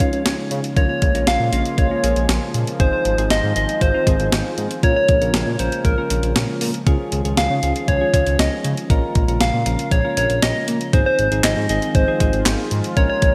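A steady, straight 4/4 pulse at 118 BPM comes from a clean 12-bit drum machine with a thumpy kick, medium-tuned snare, hi-hat and handclaps, overdriven and up front, driving this nocturnal synth-pop excerpt in Bb minor through Dbadd9, Bbm7 and Ab6 chords. A smooth, detuned sawtooth-and-square bass with vibrato sits under soft, round electric-piano-like keys with chorus and an evolving, resonant pad with a filter swell in the background. Up front, a bright, warbling FM lead with chorus and digital delay carries the melody, all set in a lush hall reverb with bright 1980s-style digital production.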